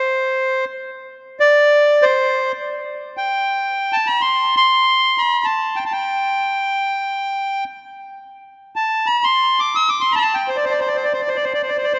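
A lone accordion opens in free time, its reedy single-reed voice clear and up front with a dry tuning, tracing a stately, festive line in maqam rast on C that spans C5 to a half-flat E6. The brief 12-second fragment, cut from a longer piece and tuned to A4 = 441 Hz, rests in a church's long, wet reverb that lets each phrase linger for 3.5 seconds.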